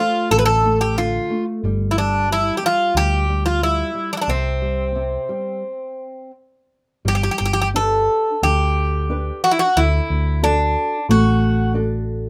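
A metallic, double-strung Greek bouzouki sings the melody up front over a small, thumb-plucked nylon-string guitar with audible finger squeak, joined at 0.3 seconds by a dark, round hollow-body electric bass, in this tender, nostalgic fado-style ballad excerpt at a rubato 90 BPM in C major that halts for a stop at 5.6 seconds before moving to G major at 7.0 seconds, all set in light reverb.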